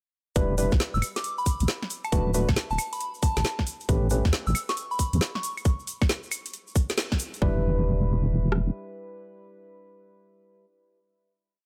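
At 0.4 s a moody, late-night two-step UK garage groove at 136 BPM in E dorian opens with a tight, up-front two-step kick and rim clicks, skipping swung hi-hats, claves and a woody snare with metallic hats in a small room, a grainy shaker in the background, and a deep, softly wobbling sawtooth bass carrying a syncopated line. Hollow, nasal organ-like stabs with lush chorus and dub echo punch out syncopated chords over Em7, D6 and A9, while a pure FM bell drifts in at 0.9 s with short mellow answering phrases through chorus and echo. After a band accent, the drop gives way at 7.4 s to a final Em7 from the stabs, with the kick, rims and bass carrying on beneath them for a moment, the whole piece sounding dry and close.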